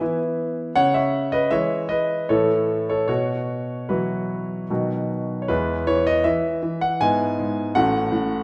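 Classical-period piano sonatina in E major, playful and graceful, moving in 3/4 at roughly 74-81 BPM with a rubato feel that lets the pulse breathe. A bright concert grand piano plays solo throughout this excerpt, cut from a longer piece, its tone brilliant and natural with deep bass and placed up front in the mix. The harmony moves from E through C#m and A to a suspended Bsus4 that settles onto B, before a new section begins at 5.5 seconds, returning to E and passing through E/G# toward F#m/A as the clip ends at 8.4 seconds. The piano spans a range from A1 up to G#5. A wet recital hall reverb with a 1.5-second decay surrounds the instrument, and the overall production leans dark and warm, framing the piano's sparkle in a mellow space.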